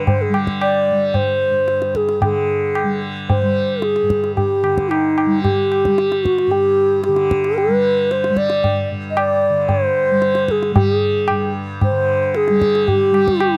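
Radiant and meditative, this Hindustani classical excerpt moves at a steady 112 BPM in 4/4, with a hollow, airy bamboo bansuri carrying the melody up front, its crisp attack and vibrato ringing between Eb4 and Eb5. Beneath it, a softly plucked tanpura sustains a buzzing, shimmering drone from the very start, while a high-tuned tabla with a short ring joins at 0.1 seconds. The close, 1970s-style studio sound is intimate and dry with only light reverb, and after a brief opening passage the music settles into a longer section from 2.2 seconds until the cut at 13.6 seconds.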